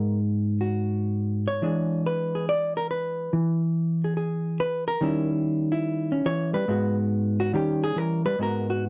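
A dry, close recording in a 1970s studio style with light reverb frames this moody, smoky excerpt of solo jazz in G# minor, moving at 141 BPM in 4/4 with a swung, rubato feel. A clean, dark, compressed hollow-body electric jazz guitar, fingered and up front, plays alone for the full 8.9 seconds, ranging from G#2 to D5. Its harmony moves from G#m7 through E7 and D#7b9 before returning to G#m7 and resting on D#7b9 at 7.5 seconds.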